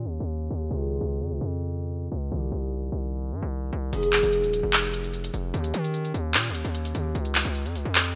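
Dark and eerie, this half-time trap excerpt in F minor at 149 BPM opens with a thumb-plucked, ringing concert harp muffled by a low-pass filter and a saturated, up-front distorted 808-style bass moving through chords from Eb7 to Cm under a filter sweep, before a trap drum kit with metallic hi-hats, handclaps and crash cymbal enters at 3.9 seconds, all in a rough home demo mix with light reverb.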